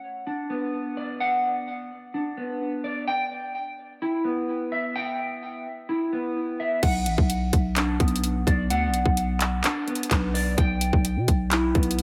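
Hip hop in a trap vein, this half-time passage is cut from a longer piece and carries an eerie, menacing mood. A mellow, dark electric guitar opens alone with clean, fingered arpeggios, colored by analog chorus, a low-pass filter and delay. At 6.8 seconds a growling, buzzy 808-style bass arrives with a fast attack and a decaying sine body. An electronic trap kit enters at the same moment, with a hard-clipped kick, metallic hi-hats, handclaps and crash cymbal. Guitar, bass and drums all sit up front, while a moderate plate reverb soaks the mix in a dreamy digital ambience.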